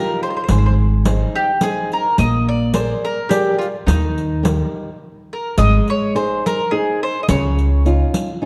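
Sunny and lively, this is a short cut from a longer Italian folk serenade in Eb major, moving in a lightly swung 3/4 at 106 BPM. A picked mandolin carries the melody up front, its double strings giving a woody, warm tone. Beneath it, a fingerpicked flamenco guitar supplies the accompaniment, with audible finger squeaks, while a close, dry riq played with hard hands adds dark jingles. A thumpy pizzicato upright bass with steel strings sits prominently in the low end, tracing a progression through Ab, Bb7 and Eb before a brief stop from 5.0 to 5.6 seconds opens a new section on Ab and Dbadd9. The production is dark and warm, set in a moderate scoring-stage reverb, and the guitar is the last part to sound, ending at 8.5 seconds.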